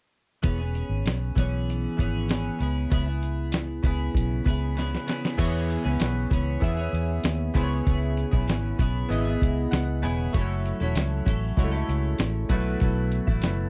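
A straight 4/4 groove at 97 BPM from a gritty, tape-warm sampler-style drum kit with a thumpy kick and medium-tuned snare anchors this sunny, nostalgic indie and bedroom pop excerpt in E major, with a round, foam-muted fingered bass sitting just as close beneath it. A bright, twangy twelve-string electric guitar with subtle chorus and a warbly pitch drift picks through E6 and C#m7, and a drum fill at 4.8 s leads into the second section. There, glossy retro synth keys with pulse-wave and sawtooth tones and a filter sweep enter at 5.4 s, add a fill around 9.4 s, and colour the move through F#m7 to B7sus4, all captured in a dry, close 1970s-style studio sound.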